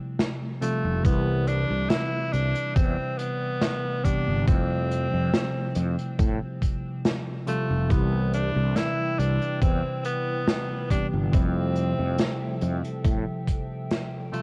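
A clear tenor saxophone carries the melody from 0.6 seconds, its light vibrato and smooth top roughened by vintage 12-bit sampler grit and trailed by tape echo. This is a nostalgic, faded vaporwave fragment cut from a longer piece, moving at a slow 70 BPM in 4/4 with a gentle sixteenth-note swing in C major. A bell-like tine electric piano, clean and direct under a lush chorus, plays chords that alternate between Fmaj9 and Cmaj7. Underneath, a growly fretless electric bass sits up front beside a thumpy, sampler-style electronic kick, while an unplugged acoustic kit adds hi-hat and a medium-tuned snare played with bundle sticks, bathed in gated reverb. At 8.9 seconds a dark, warbling pad of detuned, wave-folded square and triangle tones drifts in behind everything with a slow attack, and the whole recording, wrapped in cassette-tape studio ambience, fades out from 12.5 seconds.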